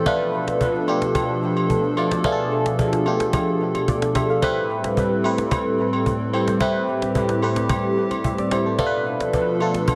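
This amapiano excerpt at 110 BPM sets a deep, late-night mood, moving between Bm7b5 and Am7 chords. A biting, percussive FM electric piano with a vintage warble sits up front, colored by phaser and dub echo, over a hollow, flute-like pad whose detuned chords are thickened with chorus. A woody, close and dry cajon and band-limited agogo bells with dub echo keep time in an echo-heavy mix bathed in moderate spring reverb.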